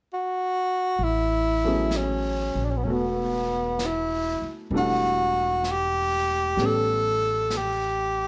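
Intimate and romantic, this short excerpt from a longer jazz ballad moves at an unhurried, swung pace in 4/4. A breathy tenor saxophone opens the melody alone at 0.1 seconds, up front, with a mellow subtone, light vibrato and scooped notes in a classic jazz style. Pizzicato upright bass and a brushed drum kit join at 1.0 seconds; the bass sounds woody and thumpy in its low register, while the snare and hi-hat sit distant and roomy, as if heard across a small room. A clear upright piano enters at 1.6 seconds with a boxy tone and short sustain, accompanying the horn over lush harmony that moves from Amaj13 to Em11 and on to A9. Light reverb gives the saxophone-led group a soft, close sense of space.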